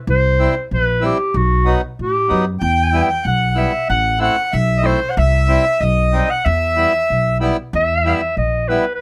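This klezmer piece in 2/4 feels both festive and soulful, with a straight pulse. A clear clarinet carries the melody in a soft-attacked, classical style, sounding roomy yet up front. Beneath it, a woody pizzicato upright bass with steel strings anchors the low end, while an accordion with a full, reedy tone and dry tuning fills in the accompaniment from 0.4 seconds. A second accordion, hollow in character, adds a higher line from 2.6 to 7.4 seconds. The harmony moves through C, B, Em and Am under light reverb, captured by close, detailed microphones, and the passage is cut from a longer piece.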